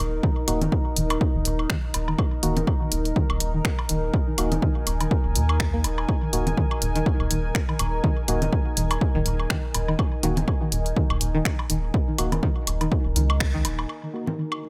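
Minimal techno at 123 BPM in Eb minor, clinical and cool, with a 56% swing on the 16ths and a single Eb minor chord throughout this short cut from a longer piece. A rubbery, bouncy square bass and a deep, moody ambient pad with chorus and built-in reverb both pump to the sidechain from the start, while a punchy, tape-toned electronic kick and an up-front analog drum machine of finger snaps and hi-hat drive the groove. A twangy, string-like resonator pluck riff sits in the background with chorus, digital delay and a filter sweep running to 13.9 seconds, joined by a dark, hollow organ stab and overdriven, layered woodblock and congas, with a band accent at 13.4 seconds under light digital ambience.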